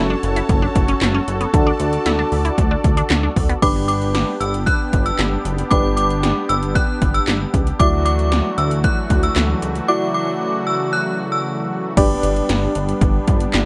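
Nostalgic and wistful, this synth-pop excerpt moves at 115 BPM in a straight 4/4, with a dark, dry production. Up front, the overdriven 80s electronic pad drums come in at 0.2 s with a punchy kick, gated snare, metallic hi-hats, handclaps and crash cymbal, while a glossy chorused synth bass with a pulse-wave, evolving character anchors the low end. Soft, round electric-piano-like synth keys with chorus and tremolo carry the accompaniment alongside a brassy, nasal analog pad holding sustained chords over a progression from F#m and D to G and Dadd9. A juicy, squelchy resonant blip pluck with phaser and delay spins arpeggios only until 3.6 s, when an inharmonic FM synth chime with ensemble chorus, tremolo and delay enters as a second line high above, ringing until 11.4 s. A break arrives at 9.9 s before the opening material returns on G.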